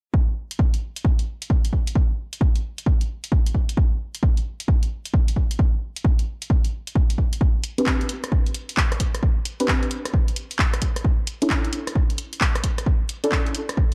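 A dark, tape-warm production with light digital reverb frames this late-night, skippy two-step garage excerpt at 132 BPM, its 16ths swung. A punchy electronic kick sits up front from the start, joined at 0.5 seconds by an analog drum machine's handclaps, hi-hat and rim click, both re-recorded in a large room. At 7.8 seconds a deep, mellow, detuned chord stab enters with chorus, delay and a filter sweep, its fast attack and short decay outlining Csus2 and then C#m.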